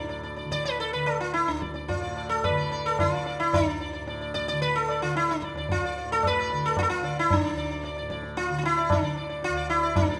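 Hindustani classical music in a meditative, solemn mood, this passage from a longer performance sets raga Shivaranjani in D at 111 BPM in a straight 7/4, with the tempo speeding up throughout its 10.2 seconds. Up front, the sitar carries the melody between D4 and D5 with a plectrum-plucked, buzzing tone haloed by shimmering sympathetic strings, while a softly plucked, warm tanpura drones low beneath it. Low-tuned tabla with a short ring and a small-room character joins at 0.2 seconds, and a moderate recital-hall reverb surrounds the ensemble.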